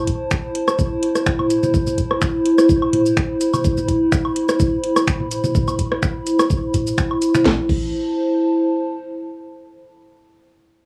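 Cool and quirky, this minimal techno excerpt sets a warbling, nostalgic tape-like pad with chorus and sidechain pumping up front over a knocking electronic kick, a garage drum kit of cracking snare, metallic hats, shaker, finger snaps and crash cymbal, and a booming analog drum machine whose rim clicks, toms and woodblock carry tape echo, before a deep, punchy sub bass slips in at 7.5 s and the pad lingers to 9.3 s in a small room.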